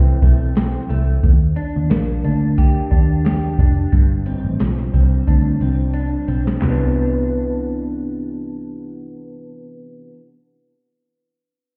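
Nostalgic and hazy, this short cut from a longer indie pop and bedroom pop piece moves at 89 BPM in 4/4 with a gentle swing on the sixteenths, centred in C major. A soft vintage rhythm box sets the groove with a deep kick, crisp snare, metallic hats, handclaps and toms, its snare, clap and hats carrying a short room sound, and it rolls through a drum fill from 5.3 to 6.6 seconds before dropping out at 6.8 seconds. Underneath, a dark, round, foam-muted picked electric bass sits up front with a punchy, amped tone. An electric guitar through a small old amp supplies slightly broken-up, lo-fi accompaniment with a subtle chorus and vibrato, drifting over Fmaj7, Ebmaj7 and G7sus4 before the harmony settles onto Cmaj9 at 6.6 seconds. The mix sounds muffled, as if heard through a wall, with a stone-room reverb and shaped EQ adding to the hazy atmosphere.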